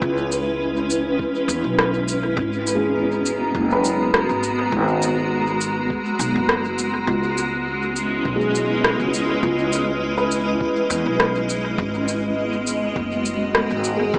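A cloudy, detuned granular pad sits up front with sustained chords that drift through C#m7, G#m9 and C#m9, giving this deep, spacious ambient dub fragment its blurred, evolving core. From 0.3 s, an electronic cabasa and rim click with a tape-warm, small-room sheen step forward through dub echo. Beneath them, a growly pizzicato upright bass anchors the low end, while a muted, dark felt piano plays echoing arpeggios and a muffled, pitched-down kick thumps in the background. The whole fragment is bathed in moderate spring reverb and an echo-heavy mix with a small speaker sound.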